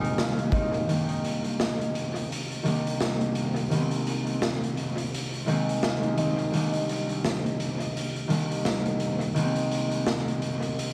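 Tough yet reflective, this boom-bap hip-hop fragment moves at 85 BPM in 4/4 with a 58% swing on the sixteenths, sitting in C minor. A thumb-plucked concert harp carries the accompaniment throughout, ringing and up front, its tone filtered and dusted with cassette-tape character and trailing dub echo as it moves between Abadd9/C and Cm7. A raw garage drum kit of hi-hat, kick and snare plays for the full length, gritty and saturated with vintage 12-bit sampler crunch, a rolled-off top and a pumping, bright stone-room sound, though the punchy kick drops away after 0.9 seconds. For that opening moment, a deep, detuned analog pad of sawtooth and triangle with a sub octave lingers barely audible beneath the harp. Moderate spring reverb, an echo-heavy mix and vinyl crackle give this short cut from a longer piece a hazy, worn atmosphere.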